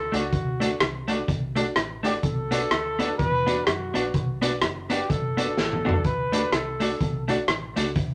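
Upbeat and joyful, this short ska excerpt at 126 BPM in D mixolydian swings along as a breathy, whispered trumpet carries an intimate solo melody up front over a clean electric guitar with vibrato, worn, slightly detuned upright piano stabs, a round, foam-muted dub bass and a punchy vintage drum kit with rim clicks that throws in a fill at 5.6 seconds, all moving from D to Bm and back in a moderate studio room.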